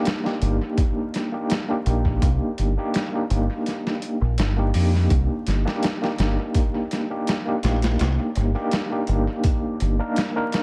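A barky, overdriven tine electric piano opens the clip, playing a rootless C minor seventh chord between Bb3 and Bb4 through a combo amp, its fast tremolo and analog delay giving it a gritty, smoky edge. A sampler-style trip hop drum kit joins at 0.1 seconds with hi-hat, a thumpy kick and a medium-tuned snare, sounding compressed, pitched down and muffled, with a tape-like warmth and the character of a small room, plus its own analog delay. At 0.4 seconds a deep dub fingered electric bass enters, round and dark, sitting prominently between G1 and F2 until 10.0 seconds. The groove moves at 83 BPM in a straight 4/4 feel in C minor, smoky and dark throughout this short section cut from a longer piece. The echo-heavy mix carries vinyl crackle and little reverb, keeping all three parts close and up front.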